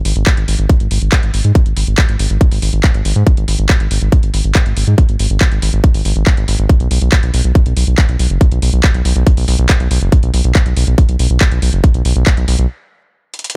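A layered electronic kit of handclaps and metallic hi-hats with a small-room character opens this hypnotic psychedelic trance excerpt, and a tight, up-front electronic kick enters just after to drive a straight 4/4 pulse at 140 BPM. A round, deep analog bass blending sawtooth, sine and triangle tones sits up front with a fast attack and dark, evolving sustain, spanning F#1 to G#2. The mix stays dry with little reverb, and the bass drops out at 12.7 seconds for a brief stop before a drum fill at 13.3 seconds.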